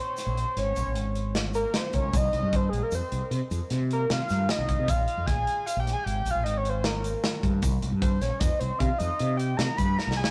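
A fat, detuned analog synth lead opens this brooding, intricate progressive instrumental at 0.0 seconds, soloing with phaser, digital delay and vibrato over a Bb dorian progression of Bbm7, Cm7 and Bb5 at 153 BPM in a straight 7/4. Almost at once a modern studio drum kit with a punchy kick and a medium-tuned snare, a round, dark fretless electric bass and a grainy egg shaker in the background join in. The kit closes with a drum fill at 10.0 seconds, all captured as a rough rehearsal-room recording with light reverb.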